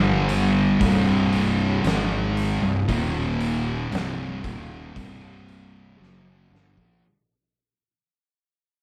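A slow, straight 4/4 pulse at 58 BPM carries this hypnotic, sludgy stretch of stoner and doom metal in C minor, tuned slightly flat to A4 = 437 Hz and cut from a longer piece that fades out across its whole length. Two dark, picked fuzz guitars sit up front grinding out a heavy riff over G5, Cm and Eb5 chords. A growly, overdriven fingered bass with a bright edge drives underneath, and an oversized low-tuned kit joins at 0.3 s with a fat snare, punchy kick and hi-hat, saturated and gritty with a rolled-off top, before a drum fill at 6.0 s, all heard as a band playing live in one room with moderate studio reverb.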